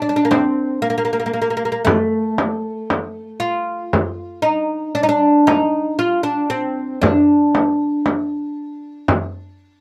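A woody, fretless oud opens this melancholic, hypnotic fragment of a Turkish makam ensemble piece, its plectrum-plucked double strings carrying the melody up front in D makam kurdi. A vintage, band-limited frame drum joins at 0.3 s and keeps a straight 10/8 pulse at 116 BPM counted in eighths. The dry, close 1970s-style studio sound carries a light touch of reverb, and the piece is cut from a longer work, ending at 9.8 s.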